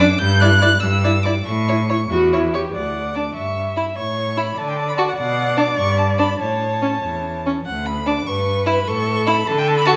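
The first violin stands at the front, carrying a smooth, even melody high in its register with rich vibrato, bowed by a single player. Beneath it, the second violin adds a warm, focused line with a smooth top. The viola and cello, each bowed by a single player with vibrato, sound more distant, though the cello still comes through clearly as it anchors the bass. This is a cheerful, lively classical-period movement for string quartet in a lilting 6/8 with a flexible, rubato feel, heard as a short cut from a longer piece. A brief opening phrase gives way at 2.7 s to a new passage whose harmony moves through D, B minor and G before returning to A. The recital hall's reverb is generous and wet, lending the quartet a glowing sense of space.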